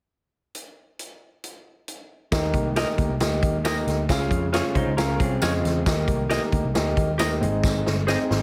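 A straight 4/4 pulse at 136 BPM opens on a punchy, big-room drum kit playing alone from 0.5 seconds, and at 2.3 seconds an up-front concert grand piano, a round, foam-muted picked bass and a jingly, distant tambourine join this joyful, danceable 1960s-style soul cut in Eb major, with clean picked electric guitar stabs over Eb, Db and Ab chords, a brief dark, slightly broken-up lo-fi guitar riff from 4.7 seconds, and a closing drum fill, all heard through a heavily compressed radio-style sound with light reverb.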